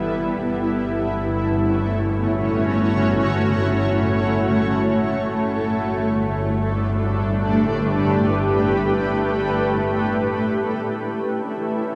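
A granular cloud pad sits up front throughout, its blurred, evolving chords drifting from F#m7/G to G69 and landing on A at 10.4 seconds in this luminous, weightless ambient fragment cut from a longer piece. Beneath it, a bowed symphonic double bass section holds a low G with focused, lush vibrato until it drops away at 10.4 seconds. The whole is steeped in a huge, echoing reverb and a cassette-tape character.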